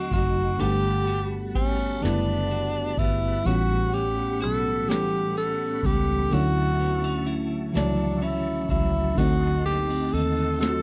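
A dry, close 1970s-style studio sound frames this sensual, tender slow six-eight R&B cut, where a breathy tenor saxophone with scooped notes, vibrato and slapback echo carries the melody up front over a clean, tremolo-touched electric guitar second line, a lush, dreamy FM electric piano with a soft pad layer and chorus, a faint tonewheel organ holding chorus-vibrato chords through a slow rotary speaker, a dark, round, foam-muted fingered bass, and a booming analog drum machine with a deep kick, crisp snare and metallic hats entering at 0.1 s, all moving through D7b9, Gmaj9, A13 and Dmaj9 chords.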